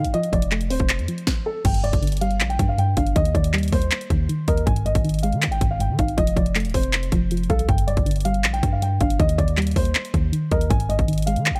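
Eerie and brooding, this half-time trap hip hop fragment pairs a boxy, short-sustained dark grand piano melody carrying a delay with a soft, round filtered pluck dressed in chorus, while a deep, sine-toned 808-style bass holds long decaying notes beneath an up-front electronic kit of hard-clipped kick, sharp snare, bright hi-hats, handclaps and crash, all set in a dry, close space as the music shifts into a new section at 1.6 seconds.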